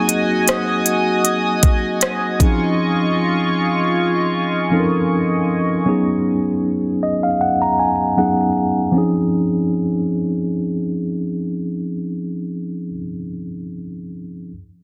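A dense, heavily limited modern sound sits in a moderate scoring-stage reverb, with every part placed up front in this dreamy, tender slice of contemporary R&B cut from a longer piece. A mellow tine electric piano carries the accompaniment throughout, clean and direct through a low-pass filter, and plays a fill at 6.6 seconds leading into a new section. Beside it, a chorused pulse-width pad holds sustained chords with a soft attack and long release, shimmering and retro with a bright pulse-wave and sawtooth edge, until it stops at 5.8 seconds. An electronic trap drum kit of knocking kick, crisp hi-hats and rim clicks adds an overdriven, small-room punch, but drops away at 2.6 seconds. A filter sweep runs through the opening section, and the gentle swing and lush seventh and sixth chords keep the mood soft and floating.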